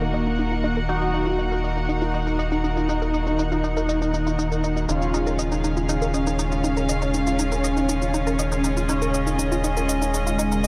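A round, deep analog bass sits up front with tube saturation, anchoring this hypnotic, dramatic melodic techno excerpt as a thick, detuned sawtooth unison lead carries the melody through analog delay. Lush, punchy pluck arpeggios sit in the background under a filter sweep and tape echo, while a nasal, edgy sync-sweep polysynth adds stabs with chorus and tape echo. A reedy studio string section with gut-string tone holds low-pass-filtered sustained chords over a tense, very quiet bowed-like drone and a tape-warm electronic shaker, all soaked in a huge ambient reverb with a 7.9-second tail.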